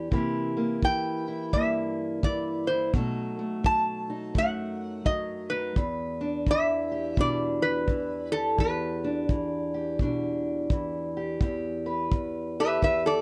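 A dry, close 1970s-style studio sound frames this soulful, mournful acoustic country blues excerpt in E minor at 85 BPM with a swung 4/4 feel, where a dark, boxy fingerpicked parlour guitar and a tight, brushed kick drum support a nasal, metallic resonator slide guitar carrying the melody from 0.8 seconds and taking a short steel-bar solo at 11.4 seconds over chords moving from C7 and B7 to Em7 and Em.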